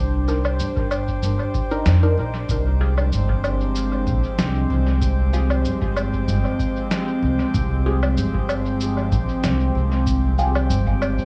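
A lightly swung 95 BPM groove in 4/4 carries this hazy, meditative ambient dub piece, where a woody, thumpy pizzicato upright bass sits up front beside a warbling, lo-fi tape-like pad with chorus, built-in reverb and 12-bit sampler grit sustaining Cm9 into Fmadd9 at 2.5 seconds, while a faint glassy harmonics texture drifts above, nasal filtered dub chord stabs with phaser and dub echo enter at 0.3 seconds alongside muffled, pitched-down electronic cabasa, woodblock and snare treated with dub echo, and a deep analog kick joins at 0.8 seconds in an echo-heavy mix with little reverb.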